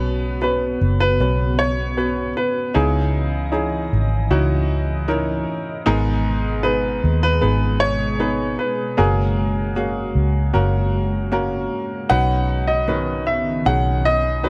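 Emotional and heartfelt, this slow pop excerpt in B major at 77 BPM sets a clear grand piano melody with tape echo over a woody, intimate upright piano whose action noise can be heard, a round, foam-muted vintage electric bass sitting up front, and a glassy, ethereal FM pad with ensemble chorus and long release drifting in the background, all in a small room with light reverb as the chords move from Bsus2 through C#madd9, G#madd9 and F# to Badd9 at 12.1 seconds.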